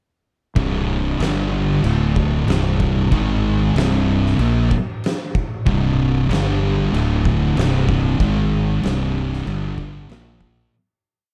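At a straight 94 BPM in 4/4, an oversized, low-tuned drum kit with a punchy kick, fat snare and crashes sets a big, gritty groove, while a growly fingered bass with overdrive doubles the riff in steady quarter notes. Two thick fuzz guitars, one up front and one set back, pick a brooding C minor power-chord riff built on C5, G5, D5, Ab5 and, near the close, Bb5. This brief, ominous stoner-doom piece has a dark, dry production and fades out from 8.2 seconds to its end at 10.7 seconds.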